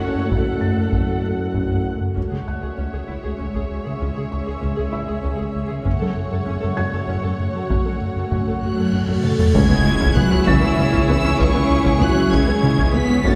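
Drenched in the wet reverb of a concert hall, this vast, tense cinematic score in 6/8 blends orchestra and electronics: a distant, lush violin section takes the melody from 2.2 s over a second violin line, focused violas, a blurred, detuned granular cloud pad, mellow background horns, a warm background tuba, close cellos, very quiet double basses and a deep, wave-folded analog bass riff, while a felt-muted upright piano adds soft texture with audible action noise, saturated taiko drums sit underneath, and a huge, bright cymbal swell rises at 9.1 s into an impact at 9.6 s.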